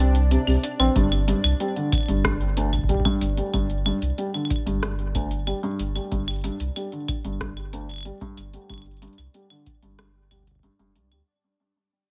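IDM excerpt at 93 BPM in 4/4 with a straight feel, melancholic and cerebral in mood, fading out from 1.0 seconds to the end at 11.3 seconds. A felt-muted upright piano sits up front playing arpeggios from D2 to C4, its thick-felt tone soft, dark and intimate, colored by tape echo. Beneath it a round sine sub bass holds sustained low notes between F1 and D2, deep and close. An electro analog drum machine with tape-warm character supplies cabasa, claves, metallic hi-hat and rim click from 0.1 seconds, joined at 1.0 seconds by a deep electronic kick drum. In the background, a bright, pulsing gated texture of detuned triangle voices in unison sits between D4 and D5, colored by chorus and its own reverb, while the overall sound stays dry over a Csus2 moving to G5.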